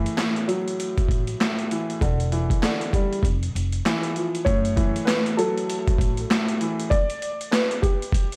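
A smooth, vintage upright piano filtered through cassette tape and a woody pizzicato upright bass open this tough, gritty boom-bap hip-hop excerpt at 98 BPM with a swung 16th-note feel, joined at once by an up-front, compressed, pitched-down sampler kit of thumpy kick, high-tuned snare, hi-hat and handclaps, before a dark, worn, slightly detuned second upright piano with audible action noise and tape echo carries the melody from 4.4 seconds, all set in a dry hardware sound flecked with vinyl crackle.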